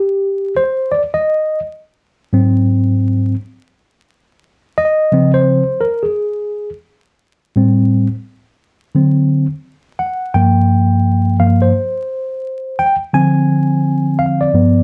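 Dark, crackling vinyl-toned production with a moderate studio reverb frames this nocturnal, mellow hip hop fragment at 86 BPM with a swung 16th-note feel, where a worn, slightly out-of-tune tine electric piano plays alone and up front for the full 14.8 seconds, its clean, direct tone given a slapback echo as it moves from Cm through Ab7, Dbmaj7, Am7, D7 and Gm7 to Dm7b5.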